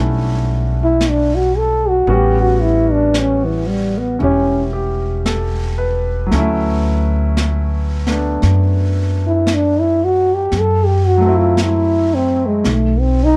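Intimate and tender, this slow jazz ballad in D major moves at 57 BPM with a gentle swing, and the passage is cut from a longer piece. A dark, smooth trombone carries the melody up front with vibrato from 0.8 s, over a woody, growly pizzicato upright bass and a clear concert grand piano with deep bass. Brushes on a warm, rolled-off drum kit join at 1.0 s, all set in light reverb as the harmony moves from Em11 through A13 and Dmaj9 toward F#m7b5 and B7.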